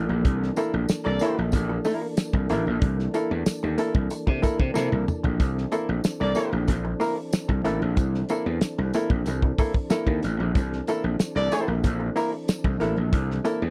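A straight 4/4 funk groove at 93 BPM in C mixolydian comes from a damped 70s drum kit with a fat snare and tight kick, a jingly tambourine in the background, a short drum fill partway through, and a gritty, growly slap bass punching up front. A clean, compressed hollow-body jazz guitar picks out accompaniment while a percussive tonewheel organ holds mellow sustained chords, opening on C13, through a fast rotary speaker, a touch of overdrive and chorus vibrato. A dark horn section with light vibrato adds playful, brief lines at 1.0, 6.2 and 11.3 seconds, all captured in a dry, close 1970s-style studio sound cut from a longer piece.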